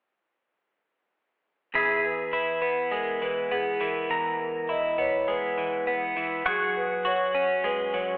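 Entering at 1.7 s, an up-front, compressed twelve-string electric guitar picks clean, warm arpeggios with slapback echo in this soaring, euphoric rock excerpt at 102 BPM in E lydian, alongside soft-mallet vibraphone arpeggios that sound mellow, metallic and ringing with the motor off and carry the same slapback echo. From 1.8 s a bright, twangy pedal steel guitar, played with fingerpicks and slide, holds sustained chords with volume swells as the harmony moves from E to F#sus2 at 6.5 s. A wet concert hall reverb and a telephone sound colour the whole recording.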